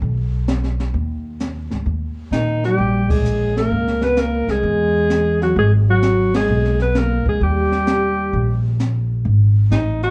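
Set further back in a wet club reverb, this moody, late-night small-group swing and bop excerpt in G# minor at 130 BPM opens with woody pizzicato upright bass and a smooth, rolled-off brush kit with a boomy kick and high-tuned snare, before a clear alto saxophone with vibrato and scooped notes takes the melody at 2.3 seconds over a dark, close-miked trombone second line that stops at 8.8 seconds, with two band accents punctuating the passage.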